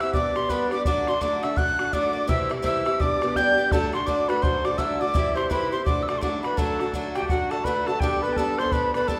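A wet recital-hall reverb, with a decay of about 1.4 seconds, surrounds this lively, rollicking Celtic hornpipe, a short cut from a longer folk piece in D mixolydian at 168 BPM in 4/4 with a swung eighth-note feel. A breathy metal whistle carries the melody high in its register, its vibrato, crisp chiff and gentle warmth riding over the ensemble. Beneath it, an airy wooden baroque flute plays a second line in a lower range with a straight, tongued tone. A picked twelve-string acoustic guitar sits up front, its fresh strings giving a shimmering, octave-doubled sparkle over a slightly boxy archtop body as it moves through G, D and C before settling on Gadd9. An open, boomy bodhran with a live-room feel drives the percussion, and all four parts play throughout, with the tune shifting into a new section at 6.6 seconds.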